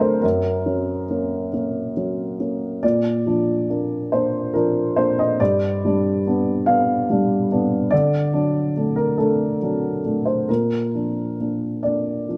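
Close, lightly reverberant sound frames this intimate, peaceful fragment of neoclassical minimalist piano in Bb major, where a dark, woody, slightly detuned upright piano plays alone up front at a slow, rubato 47 BPM in 6/8, spanning D2 to F5 across chords of Gb, Bb, G, D and back to Bb over its 12.4 seconds.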